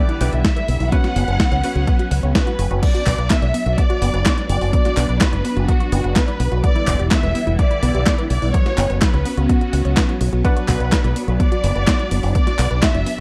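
A punchy, dry electronic kick drives a straight pulse from 0.4 seconds, arriving just after a gated 80s digital drum machine whose handclaps, hi-hat, crash cymbal and snare carry a gated reverb with a tape-warm, big-room character. Up front, a fingered electric bass with an envelope filter adds a bright, amped edge to this danceable, nostalgic italo disco cut from a longer piece. A lush, bowed studio violin section sings the melody with vibrato and tape echo, while a swirling, phased string machine holds sustained chords in the background. A round, detuned analog pluck ripples through arpeggios with chorus and echo, its filter sweeping over the opening, and a brilliant baby grand piano adds short stabs at the start and again from 10.4 seconds. The harmony moves from Em7 to F#sus4 before settling on Bm at 2.8 seconds, all captured in a close, dry 1970s-style studio sound.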